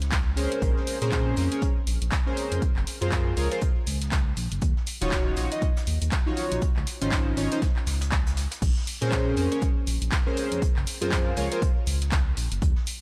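Swung sixteenths in 4/4 drive this moody deep house excerpt: an up-front electronic kick plays alongside a punchy analog drum machine with handclaps, hi-hat and crash, both re-recorded in a large room, and beneath them sits a very quiet, muffled brush kit whose gritty, saturated hi-hat and snare add lo-fi texture. A smooth, dark synth bass built from sawtooth and square waves with ring modulation pumps against the kick. Glossy, detuned polysynth stabs with chorus, a filter sweep and digital delay pump as well, cycling through chords such as Bbm9, Gbmaj9#11 and Ebm9 in a digital ambience.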